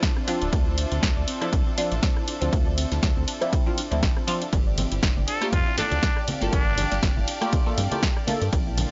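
A steady 4/4 deep house groove at 120 BPM, with a light swing on the sixteenths, is anchored by a dry, punchy electronic kick up front and a punchy analog drum machine playing hi-hat, ride cymbal, rim click and snare. A round, deep analog bass enters at 0.4 seconds, and damped, low-tuned congas join in the background at 4.5 seconds, their sound compressed and saturated. Over a hypnotic, late-night harmony that moves from Dm9 to Gm9, a filtered dub chord stab sounds nasal and resonant, colored by phaser, lush chorus and analog delay. Deeper in the mix, a moody ambient pad holds sustained chords with chorus and reverb, a soft pluck with chorus and analog delay plays arpeggios, and a clear, bowed studio string section adds texture, with sidechain pumping on all of these parts. At 5.3 seconds a raspy jazz-style trumpet with a straight mute takes a brief solo through tape echo, its growling tone shaded with light vibrato, until 7.0 seconds. 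This excerpt from a longer piece has a dry, gritty hardware sound with transformer saturation, digital ambience and a dark top end.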